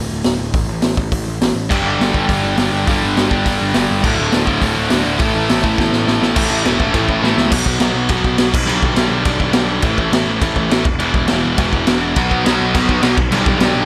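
A dry, raw-sounding punk rock excerpt at 207 BPM, energetic and rebellious, where a growly fuzz-driven picked bass opens alone before a gritty, punchy garage drum kit with crash, hi-hat, kick and snare joins, and two bright, up-front distorted electric guitars enter at 1.7 seconds playing riffs over power chords from G5 through B5 and E5, one guitar dropping out at 7.5 seconds and returning at 12.2 seconds, with a drum fill marking the shift into the final section.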